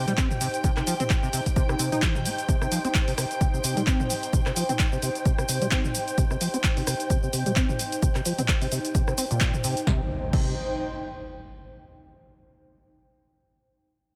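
A light reverb frames this hypnotic, trippy acid house passage, cut from a longer piece, moving at 130 BPM in 4/4 with a 56% swing on the sixteenths over a C minor chord. Up front, a punchy electronic kick and a tape-warm analog drum machine drive the groove, the machine supplying snare, handclaps, hi-hat, rim click, shaker, toms and crash cymbal, with a short room around the snare, claps and hats. A squelchy, resonant sawtooth acid bass riff runs under a filter sweep until 9.9 seconds, roughened by overdrive and analog chorus, its notes striking fast and then decaying. Behind it, a lush vintage string machine holds sustained chords with a sub octave and ensemble chorus, while an airy, breathy pad with a noise layer and moving notch adds mellow texture; bass, strings and pad each pump with the sidechain. At 10.0 seconds an electronic impact arrives, and the pad lingers with it until the close at 11.7 seconds.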